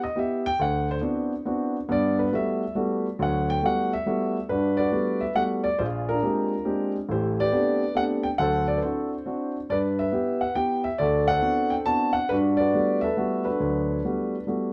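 Swinging and sophisticated, this jazz waltz excerpt features a solo dark baby grand piano, mellow and up front with long sustain, moving through rich chords like G6, D13, Gmaj13 and Bb13 across its 14.7 seconds, set in a studio room with a wet reverb.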